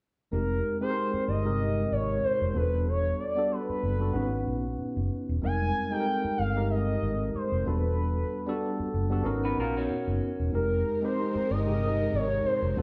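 A gliding, detuned portamento lead with chorus and vibrato opens this introspective, smooth neo-soul R&B excerpt alongside a clean tine electric piano and a dark, round, foam-muted fingered bass, each sitting up front in a reverberant studio room, with a slightly broken-up, lo-fi picked guitar line slipping in at 9.4 s before a lush bowed string section adds soft sustained chords from 10.5 s.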